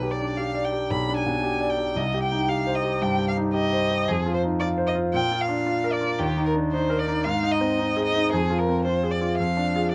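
From the first moment, a single bowed violin sings a rich, focused melody with vibrato and a smooth top over a bright, brilliant concert grand whose deep bass and long sustain drive the accompaniment, both up front in a close, detailed sound with light reverb, giving this stormy, urgent passage from a quick classical-period piano trio movement its restless charge.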